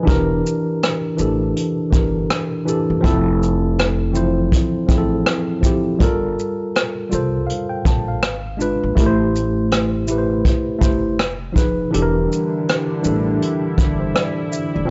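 A worn, slightly out-of-tune tine electric piano opens this reflective, melancholic lo-fi hip hop excerpt, sitting up front with a cassette-tape haze and a low-pass filter dulling its edges. Almost at once a vintage brush drum kit and a pizzicato upright bass join at a relaxed 81 BPM in 4/4, the sixteenths swung for a lazy, loping feel. The drums offer a punchy kick, hi-hat, rim click and shaker with a rolled-off top, while the gut-string bass sounds woody, dark and thumpy underneath. The chords drift through shadowy, jazzy colours such as Em7b5, Gm9, G#dim7 and Fm7b5 before circling back to Em7b5. At 11.9 seconds the kick drops out briefly as a lush, thick unison pad of detuned sawtooth and square waves enters with a slow attack, bright yet filtered and shimmering with chorus. The sound is dry and gritty, with little reverb and a hardware character that keeps the whole piece close and intimate.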